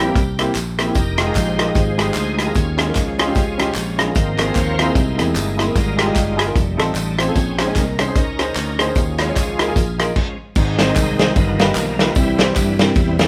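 A swung 150 BPM groove in 4/4 drives this reverent, uplifting slice of uptempo gospel in Ab major, built on fingered electric bass with a round tone, a warm grand piano accompanying, and a live-room bed of tambourine and group handclaps, with a punchy, up-front soul drum kit joining them at 0.2 s. Over it all, a bright, shouting tonewheel organ takes the lead through a slow rotary speaker, light overdrive and chorus vibrato, breaking for a brief stop at 10.2 s before the harmony moves from rich extended chords like Fm9 and Eb9sus4 toward a closing turn through G7alt to C. The band sounds like it is playing together in one large studio, bathed in moderate reverb.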